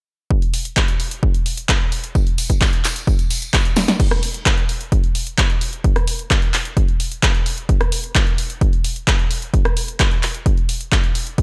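A straight 4/4 house groove at 130 BPM drives this trippy passage, built on an up-front analog kick and a punchy, tape-warm drum machine of snare, handclaps, hi-hat, rim click and crash, the snare, clap and hats set in a short room, while a jingly, bright tambourine rings distantly in a large room from 2.2 to 4.0 seconds, and a drum fill at 3.8 seconds leads into a new section at 4.0 seconds in an otherwise dry mix.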